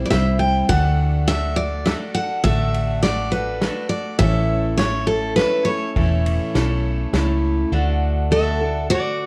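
Honky-tonk and classic country in an easygoing, sunny, straight 3/4 feel, this short excerpt sets a bright, fresh-stringed dreadnought acoustic guitar picking the accompaniment beneath a full-bodied jumbo acoustic guitar carrying the melody, both up front. They ride over a dark, round, foam-muted vintage electric bass and a natural small-room drum kit with punchy kick, snare and ride that stops at 7.3 s, and the whole recording sits in moderate studio reverb with the warbly pitch drift of worn cassette tape.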